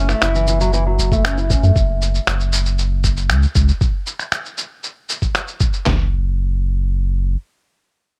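A picked acoustic archtop guitar opens this short folktronica fragment with delicate arpeggios, its tone passed through a low-pass filter and a delay, with a filter sweep and finger squeak, over a deep, round sine sub bass. The guitar drops out at 1.7 seconds, while the mellow, sustained bass stays up front with a fast attack, carrying the wistful mood alongside the percussion and continuing until 7.4 seconds. Electronic finger snaps and a shaker arrive almost at once, and a lo-fi sampler-style drum kit follows at 1.1 seconds with handclaps, toms, a thumpy kick and a fat snare. Both percussion parts sound compressed, pitched down, muffled and tape-warm, as if re-recorded in a small room, and they sit close in the mix. The straight 4/4 groove is wrapped in a digital ambience, before the drums fall away as the passage moves into a new section near the end.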